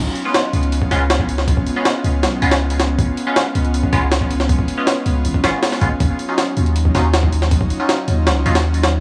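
Drum and bass with a jungle flavour, this short cut from a longer piece runs at 159 BPM in a straight 4/4, carrying a nostalgic, atmospheric mood over a dry sound with vinyl crackle. A long sustained 808-style bass opens at 0.0 seconds, deep and sine-based with a fast attack and a mellow decay, sitting up front between Ab1 and Eb2. From 0.2 seconds a jungle sampler-style drum kit drives the track with hi-hat, a thumpy kick and a high-tuned snare, sounding compressed, pitched up and gritty with overdrive, placed prominently in the mix. Band-passed chord stabs cut in over the top, nasal yet full-bodied, built from detuned sawtooth tones with fast attacks and short decays, coloured by phaser, cassette tape character and dub echo. The harmony moves from Db7 to Ebm9 at 6.0 seconds, lending the passage a hazy, wistful lift.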